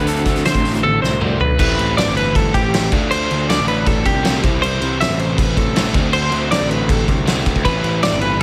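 Lightly reverberant and roomy, this intricate, wistful math rock and midwest emo excerpt opens with a twangy, compressed twelve-string electric guitar playing tremolo-treated accompaniment until 1.6 s, while a second, clean twelve-string plays arpeggios in the background alongside a crunchy, double-tracked overdriven guitar riff, a growly fuzz bass and a loose, distant indie drum kit with a fat snare, punchy kick and dark cymbals that plays a fill from 0.8 s before the chords move through Am9, Dm7 and C6.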